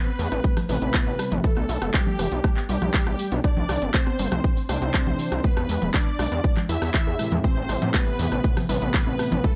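A dry, gritty hardware recording set in digital ambience carries this dark, hypnotic melodic techno cut in A minor at 120 BPM, moving from Am through Cadd9 and E7 before returning home. A punchy, tape-warm electronic kick sits up front from 0.4 seconds with a house kit of congas, handclaps, hi-hat and rim click, while an aggressive, distorted sawtooth bass with oscillator sync and ring modulation pumps beneath them. Above, a thick detuned unison lead with vibrato carries the melody, a fat, bright chorused polysynth adds a second line, a woody wave-folded pluck spins arpeggios in the background, and nasal analog brass stabs enter at 0.7 seconds, the upper synths all breathing with sidechain pumping and tape echo.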